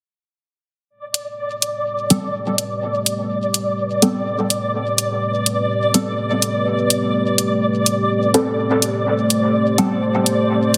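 A lightly swung 4/4 groove at 125 BPM drives this meditative, hypnotic dub techno passage in A minor, cut from a longer piece and resting on a single Am9 chord. Dark, layered electronic hi-hats sit up front from 1.1 seconds and carry the pulse, the loudest element in the mix. A flickering, grainy granular texture holds a single high D5 from 1.0 seconds, while a deep, moody ambient pad arrives at 1.9 seconds with sustained chords, its detuned sawtooth tone warbling through chorus and a vintage cast beneath it. From 2.1 seconds a muted, detuned dub chord stab plucks short, mellow hits through a phaser and dub echo, with a filter sweep shaping it throughout. The whole is set in a moderate digital echo chamber and squeezed into a heavily compressed, radio-like sound.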